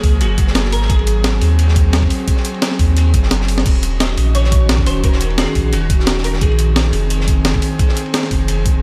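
A swung 174 BPM liquid drum and bass groove in Eb dorian drives this lush, soulful excerpt, where a knocking electronic kick, a gritty compressed sampler-style breakbeat with crash, hi-hat and snare, and a dark, saturated second break with ride and snare under high-pass filtering and a drum fill at 3.3 seconds sit over an up-front sine-and-triangle sub bass with octave and an airy, breathy chorused pad holding chords from Gbadd9 through Ebm7 to Bb9sus4, while a clean, picked semi-hollow electric guitar with ensemble chorus and tape echo plays a brief melody that returns at 4.0 seconds, all in light reverb.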